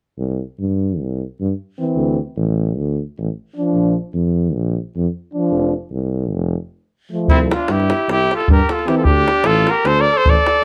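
Lightly reverberant and up close, this wild, exuberant Balkan brass band fragment in 9/8 opens on a smooth-topped tuba bass with light vibrato, joined at 1.8 s by a mellow French horn and a warm, close-miked euphonium holding the accompaniment. After a brief break, a clear, soft-attacked cornet takes the melody with plate reverb at 7.3 s, while a distant, roomy trumpet with faint vibrato adds a second line and a tight davul drives the percussion.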